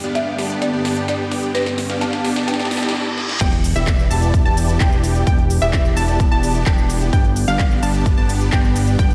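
A punchy, up-front electronic kick and a fat, detuned analog bass arrive at 3.4 s to launch the drop of this euphoric, powerful festival progressive house cut at 129 BPM, joined by a decaying, wave-folded unison pluck playing arpeggios with analog delay; before that, the build-up is carried by huge, sidechain-pumped supersaw chords with a cassette-tape tint, a lush, slow-attack chorused pad, a tape-toned big-room drum kit with crisp hats, handclaps and a drum fill, a very quiet riser and reverse cymbal leading into an impact at 3.4 s, and a woody, dry folk marimba melody sitting in the background until 3.0 s, the whole mix soaked in a dreamy hall reverb.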